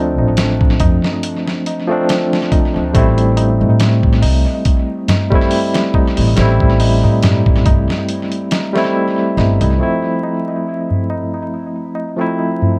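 Vinyl crackle and heavy echo fill this brooding, dark trip hop piece, which moves with a gentle swing. A barky, bright tine electric piano with tremolo and tape echo plays Dm7 and Am7 chords over a growly, woody pizzicato upright bass and a gritty, compressed sampler-style drum kit with a thumpy kick, while a high-tuned, ringing tabla sits close. After a break at 8.1 seconds, the bass and drums stop at 9.8 seconds, leaving the electric piano and tabla to close on Fmaj7.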